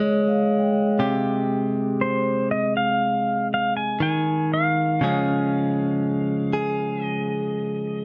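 The recording has a dark, warm production with light reverb, giving this reflective, intimate excerpt of an acoustic folk-pop ballad a close, hushed feel. At a slow 60 BPM in a straight 4/4, tuned to A4 = 444 Hz, a clean, direct-recorded electric guitar sits up front throughout, its picked, compressed tone scooped and warm. A vibraphone played with soft mallets and the motor off opens with brief metallic, ringing arpeggios in a mellow, boxy small-room sound, falling away by 1.5 seconds. From 2.0 seconds a pedal steel guitar takes the melody up front, played with fingerpicks and slide, its electric tone clean and compressed with volume swells. The harmony moves from Db5 to Abmaj7/C and settles on Db.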